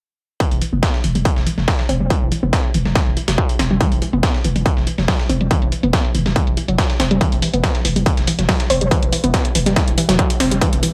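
A warbling, lo-fi sawtooth pluck riff with chorus, tape echo and sidechain pumping leads this driving, industrial peak-time techno excerpt in E minor at 141 BPM, riding over an up-front distorted kick, a gritty sampler-style kit of hi-hat and snare re-recorded in a small room, overdriven electronic hi-hats, and a growling, buzzy 808-style bass on E1, all soaked in dreamy plate reverb while filter sweeps move across the drums and the synth from 0.4 to 10.9 seconds.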